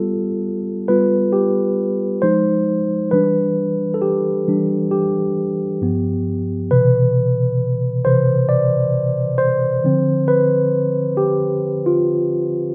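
A rough home-demo recording in a small room holds this smooth, soulful R&B excerpt, where a mellow, clean tine electric piano sits up front through its built-in speakers with a slapback echo, playing solo from 0.0 to 12.7 seconds over a gently swung 4/4 feel and moving through chords such as G9, Cmaj9 and Dm7.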